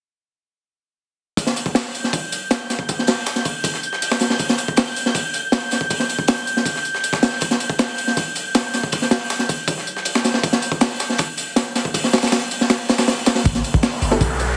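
Drum and bass with a dark, raw jungle feel at 159 BPM, this excerpt pairs an up-front, crunchy breakbeat kit with punchy kick and gritty saturation against a sampler-style break tucked in the background, while an airy, wind-like noise texture hangs over both until a build-up at 13.5 seconds brings in a boomy 808-style bass, an electronic riser and a brief vintage grand piano stab with dub echo, all set in a plate reverb with a heavily compressed radio sound.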